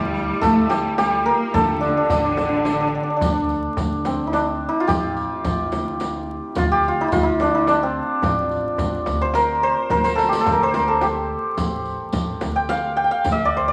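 A bright, shimmering santur rings up front in this hypnotic, melancholic Persian modal ensemble piece in 3/4, joined at first by a distant, lush bowed cello section with vibrato that stops at 3.5 s, over a woody pizzicato upright bass, a deep, dry tombak and a close frame drum in the background, and the distant jingles of a softly played riq, with a drum fill at 9.9 s and vinyl crackle beneath a large studio reverb.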